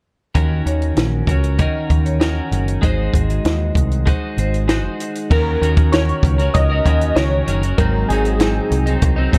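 Bright, twangy twelve-string electric guitar with subtle chorus and vibrato, a round, amped picked bass and a compact, dry cocktail drum kit with a punchy kick, high-tuned snare and dark cymbals open this mellow, wistful indie and bedroom pop piece at 97 BPM in Eb dorian, with a metallic, ringing vibraphone with tape echo sitting in the background from 0.7 s before detuned, sub-octave analog keys with analog chorus and tape echo carry the melody from 5.3 s over Ebm7 and Ab7 in a dark, warm mix with light reverb.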